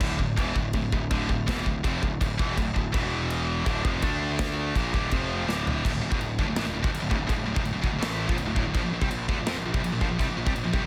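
Heavy metal in D minor at 165 BPM, this short cut from a longer piece feels dark and relentless, opening in half time before the pulse settles into a straight 4/4 drive at 5.8 seconds. A scooped, high-gain electric guitar carries the riff up front, double-tracked and picked with heavy distortion across a range from D2 to D4. Beneath it, a picked electric bass adds a growly fuzz tone, bright and overdriven, anchoring the low end from D1 to F2. An acoustic rock kit recorded in a studio room brings a punchy kick, a medium-tuned snare, toms, and crash and splash cymbals, with a fill from 5.5 seconds leading into the second section. The harmony moves from Dm through E5, F5 and D5 before returning to Dm and landing on Bb5, all set in a dense, heavily limited modern master with little reverb.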